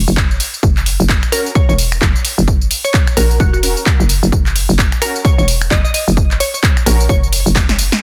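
Swung sixteenths at 130 BPM drive this swaggering, gritty bass house fragment, where a punchy, tape-warm electronic kick and a layered dance kit of snaps, claps, metallic hi-hats, snare and tambourine, their hats and snare darkened by low-pass filtering, sit up front in a small room before a drum fill at 7.6 seconds. A hollow, bouncy FM bass knocks low with sidechain pumping while a glassy, crystalline wavetable pluck carries the melody through chorus and digital delay over a Gb chord that arrives at 0.6 seconds. From 1.3 seconds, a bold, detuned sawtooth stab in the manner of an orchestra hit adds bright, phased punch roughened by 12-bit sampler grit, all pressed into a dense, heavily limited modern master with little reverb.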